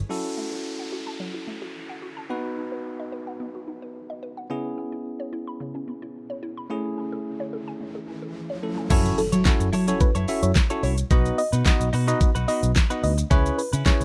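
A straight 4/4 pulse at 109 BPM drives this energetic dance-pop excerpt in F# dorian, where a bright, bell-like electric piano pumps against the sidechain while a hollow, nasal square pluck spins chorused, tape-echoed arpeggios and electronic sound effects build through a riser from 6.9 seconds. At 8.9 seconds the drop lands with an impact as a layered pop kit with a knocking kick, fat snare, crisp hats, handclaps, shaker and crash arrives up front, joined by a dark, foam-muted vintage bass and a compressed, direct clean guitar riff, with a soft, round pluck melody entering in the background moments later. The rough home demo mix sits in digital ambience over a F#m7, B, C#m7, Amaj7 progression.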